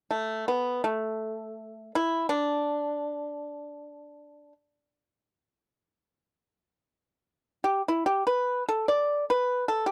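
A close, dry 1970s-style studio sound with light reverb frames this short cut of elegant, serene Chinese traditional music. A solo pipa, played with fingerpicks, sits up front from 0.1 seconds with a percussive, warm tone. The playing moves into a new section at 7.2 seconds before the recording breaks off at 9.9 seconds.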